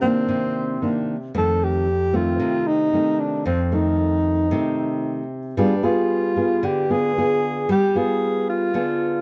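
A straight 4/4 bossa nova pulse at 113 BPM carries this wistful, smooth excerpt, where a breathy, whispered alto saxophone solo with subtone, soft attack, scooped notes and light vibrato sings an intimate jazz melody up front over a thumb-plucked classical nylon-string guitar, the harmony moving from Cm9 to F7 at 1.3 seconds and G7b9 at 5.6 seconds inside light reverb and a dark, warm production.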